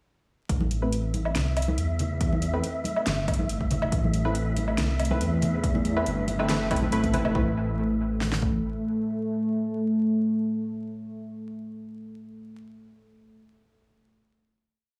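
Deep dubstep at 140 BPM in a half-time 4/4 feel, this short, dark and cavernous piece sits in A minor, with a build-up from 0.5 s to 7.4 s that settles onto a final Amadd9 chord ringing until about 10.8 s. Two layered electronic drum kits carry the beat, one with a punchy kick and fat snare, the other adding metallic closed hats, a low woodblock and another snare, both given an overdriven edge. A rumbling, detuned sawtooth bass sits up front with chopped phrases between G1 and E2, thickened by tube saturation, while ringing hand-played congas echo in the background. Sparse, muted chord stabs with a filter pluck move one shape in parallel between A3 and B4, carrying chorus and dub echo through to 12.0 s. From 0.9 s an airy, breathy wind-like noise holds a high E5, and from 2.8 s a moody sub-octave pad drones on A3 beneath it with chorus and reverb, all set in a moderate echo-chamber space with vinyl crackle.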